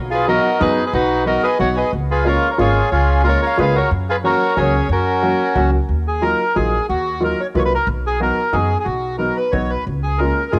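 This home recording on cassette has a light, small-room reverb, and the bandoneon, soprano saxophone and upright piano each carry a tape-worn character. It is a whirling, charming musette waltz in 3/4 at 182 BPM, tuned to A4 = 441 Hz, cut from a longer piece and built on two passes of the same section. The reedy, band-limited bandoneon sits up front with the melody, while a growling soprano saxophone plays a raspy, gritty second line in jazz style, with vibrato and scooped notes, until it drops out at 5.7 seconds. A warm, woody upright piano supplies polished accompaniment with short sustain, and a pizzicato upright bass on steel strings gives a thumpy, bright pulse close to the listener. The harmony moves through B, C#6, F# and D#madd9 before returning to B and C#6.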